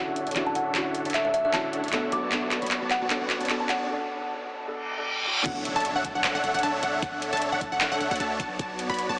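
Future bass at 153 BPM in D major, bright and euphoric, with a half-time feel and a light swing on the sixteenths, heard as a short cut from a longer piece. Lush, detuned supersaw chords carry the riff throughout, moving between Dmaj9 and Bm7 under a filter sweep, while a soft, felt-muted upright piano with audible action noise and a woody kalimba melody, both touched with tape echo, fill out the opening build-up over a drum fill on a trap kit with metallic hats, claps and crash. After a brief break from 3.9 seconds and a very quiet reverse cymbal, the drop lands at 5.5 seconds with an impact, a knocking electronic kick and a punchy, wave-folded unison pluck playing arpeggios high in the register. Underneath, a deep, boomy 808-style bass sits low in the mix, and the synths, piano, kalimba and bass all pump against the sidechain. The whole track is bathed in a huge ambient reverb yet squeezed through a heavily compressed, thin radio-like sound, as if played from a small speaker.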